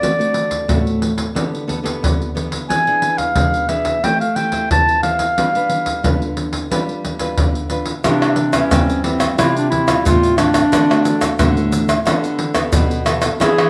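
A straight 4/4 pulse at 90 BPM drives this sunny, lively fragment of samba and choro, cut from a longer piece and tuned to A4 = 441 Hz. Up front, the percussion of surdo, pandeiro, egg shaker and tamborim is played with soft hands, with a tight surdo and a vintage, band-limited acoustic tone. A mellow clarinet carries the melody as a classical-style solo, also up front, its soft attack and smooth top ranging from C4 to A5. Beneath it, a bright, fingerpicked nylon-string guitar in classical style provides accompaniment over harmony that moves from D7 and Gadd9/D through E7, Am7 and G7. At 8.0 s the second section begins on Cmaj7, and a small, warm fingerpicked nylon-string guitar enters on the bass line. A moderate large-studio reverb lends the whole ensemble a roomy glow.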